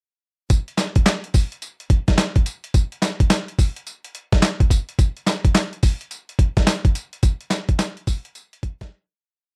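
Slick and confident, this short R&B piece rides a hard-swung drum-machine beat at 107 BPM in 4/4, with a boom bap sampler-style kit of kick, snare layered with handclaps, hi-hat and tambourine playing from 0.5 to 8.9 seconds. The kit sounds gritty and pitched down, with a thumpy kick and a medium-tuned snare, compressed and up front in a dry, close 1970s-style studio sound. A fade-out begins at 7.2 seconds before a brief break closes the piece.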